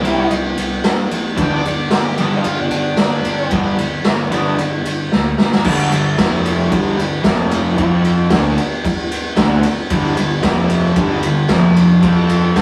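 Rowdy and raw, this garage rock excerpt opens with a dark, fuzzed octave lead guitar solo that plays until 3.5 seconds over a double-tracked, overdriven rhythm guitar riff, a round, fuzzy fingered bass and an up-front, gritty small-room drum kit with a boomy kick, before a drum fill at 5.1 seconds tips the band into a second section of alternating G5 and F5 power chords, all caught in a rough, saturated rehearsal-room sound with moderate studio reverb.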